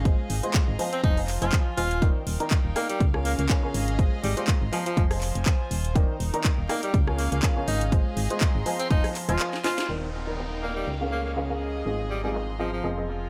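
A bright tenor saxophone carries the melody in this uplifting, joyful piano house excerpt at 122 BPM, its vibrato-tinged pop-style solo running from 0.9 seconds, treated with delay, over a swung 4/4 groove. A clear, woody, slightly detuned upright piano plays a short-sustain riff through chords moving from Ab6 to Fm7, Ebmaj7 and Db6, pumping against the beat with a low-pass filter, while a round, dark FM bass sits up front with a fast attack and decaying notes. Behind them, a rich chamber string section adds a bowed, reedy, gut-string texture in a period style, also pumping with the sidechain. A punchy, overdriven electronic kick drives the groove until 9.0 seconds alongside a layered house kit with a cracking snare, bright hats, handclaps and rim clicks, its hats and snare softened by low-pass filtering. A drum fill and band accent lead into the closing section at 9.9 seconds, where a filter sweep moves across the piano and a background downlifter sinks beneath the mix, all set in light small-room ambience.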